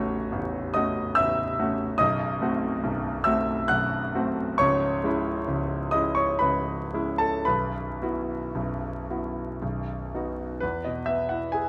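A solo concert grand piano opens on an F#m/A chord, its clear, natural tone placed up front, with vinyl crackle beneath it. This is a dreamy, nostalgic romantic nocturne in 3/4, taken with flexible rubato at roughly 55 to 73 BPM. The harmony moves through B7b9, C#m and Bsus4 before settling on B. At 10.6 seconds a new section begins on an E chord. The piano spans A0 to F#6, with a deep bass and a short sustain. A moderate large-studio reverb of 1.2 seconds surrounds the instrument in this brief passage, which is cut from a longer piece.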